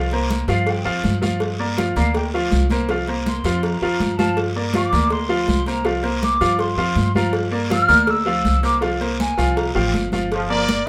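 Salsa at 162 BPM in a festive, joyful mood, this cut from a longer piece rides a repeating C7sus4 to Gm7 vamp, with a brilliant, up-front upright piano and woody pizzicato upright bass beneath a breathy, hollow jazz flute solo that carries the melody with vibrato and a chiffy attack from 0.5 seconds. Thin-skinned, high-tuned congas and a tight cowbell sit in the background, joined by a raspy guiro, all within a small room. Near the end, a smooth-topped trombone section slips in at 10.3 seconds, and a clear trumpet section takes the melody up front at 10.5 seconds.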